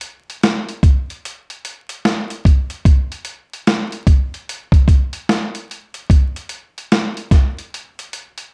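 A boom bap sampler-style drum kit opens the clip at 0.0 seconds and carries it through to 8.5 seconds, setting a reflective, hazy hip hop mood. The kit sits up front, with a thumpy kick, a high-tuned snare and hi-hat, all given a compressed, pitched-down character and the gritty edge of a vintage 12-bit sampler. The sixteenth notes are swung, lending the unhurried 4/4 groove a loose, head-nodding feel. The drums were re-recorded in a large room, which gives them a sense of space, while a light reverb and a bed of vinyl crackle add to the dusty atmosphere. Cut from a longer piece, this short passage forms a single section built entirely on the drum groove.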